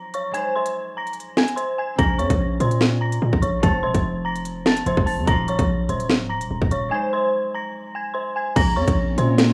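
A cold, ominous drill excerpt in Bb minor at 146 BPM with a half-time feel, opening on an eerie, warbling FM synth bell melody with chorus and digital delay over a fingerpicked, ringing concert harp, while a crisp, hard-clipped drill kit enters almost at once. At 2.0 seconds a heavy, aggressive distorted 808-style bass joins up front as the chords move through Bbmadd9, F, Ebmadd9 and Ab. An ethereal, airy pad with ensemble chorus slips into the background at 9.0 seconds, all set in a dry, rough home-demo mix.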